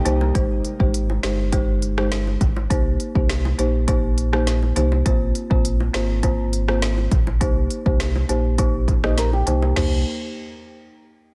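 Bouncy and tough, this dancehall cut in C minor moves at 102 BPM in a straight 4/4, opening on a brief break before a filter sweep carries it through a progression of Abmaj7, Cm7, Bbsus2 and Cm7. An up-front electronic drum kit with a deep kick, a woody snare given soft clipping and crisp hats sits alongside a full, sine-like sub bass with octave, while a dry, rustic folk marimba played with medium mallets supplies band-limited, low-passed accompaniment and round, low-tuned bongos stay in the background. A thumb-plucked flamenco guitar with audible finger squeak and tape echo arpeggiates only at 0.0 and again at 9.0 seconds, all within a dense, heavily limited modern master carrying little reverb.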